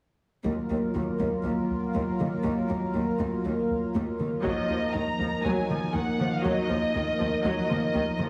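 A heavily compressed, radio-like sound with scoring-stage reverb frames this brooding, vast hybrid orchestral and electronic film cue, where a shimmering, chorused pulse-width pad holds an Ebmadd9 chord over a rubbery square-bass riff and a close, even cello line, before a lush violin melody, expressive viola accompaniment with portamento and a brief burst of heavy-stick taiko in the background arrive at 4.4 seconds.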